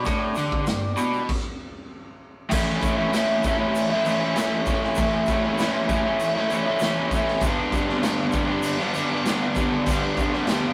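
A reedy, overdriven combo organ holds sustained chords for the first 1.2 seconds over a G5 chord, alongside a bright, double-tracked overdriven guitar riff and a grainy egg shaker tucked in the background, with a raw garage drum kit of punchy kick, snare, crash and ride joining at 0.1 seconds. After a stop between 1.3 and 2.5 seconds, the swaggering, rowdy cut from a longer garage rock piece moves to A and then back to G, with the compressed guitar and gritty, pumping drums up front. The rough rehearsal-room recording carries saturated character and moderate reverb.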